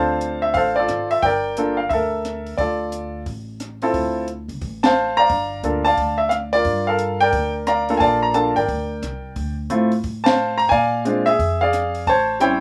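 Jazz piano trio in D minor at 177 BPM with a swung 4/4 feel, cool and smoky and cut from a longer piece: a clear, up-front concert grand carries the melody with short sustain and deep lows over woody pizzicato upright bass and a dark, smooth cocktail drum kit with a high-tuned snare, punchy kick, rim clicks, hi-hat and ride, the band hitting accents at 4.8 and 10.2 seconds as the chords move through Dm7 and Gm9 to Bb7 and A7#9, in a rough home demo mix with light reverb.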